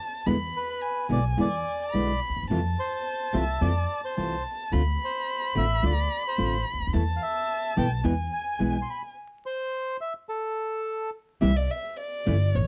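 A dark, bowed violin with vibrato opens this dramatic, tense tango excerpt at 108 BPM with a rubato feel, soon joined by fingerpicked nylon-string guitar with audible finger squeak, thumpy pizzicato upright bass and a reedy, smooth bandoneon carrying the melody up front, before a stop at 9.2 seconds and a brief violin solo at 11.4 seconds, captured through close, detailed microphones with light reverb and vinyl crackle.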